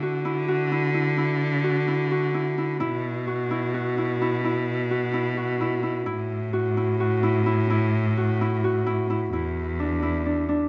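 This brief excerpt of contemporary chamber music opens with a Celtic harp and a single cello sounding together, both placed up front. Set in an uneven 7/8 metre at 258 eighth-note beats per minute with a straight feel, it carries a shimmering, playful mood. The acoustic harp, thumb-plucked and ringing with a warm tone, spins arpeggios in a narrow band from D4 to F#4. Beneath it, the bowed cello holds the bass line from E2 to D3 with a clear, focused sound, close-miked and touched with vibrato. The harmony moves from Dadd9 through B5 and A5, then shifts to Dsus2/E at 9.3 seconds as a short new section begins. A moderate recital-hall reverb of about 1.5 seconds gives the duo a natural sense of space, and the tuning sits slightly low at A4 = 439 Hz.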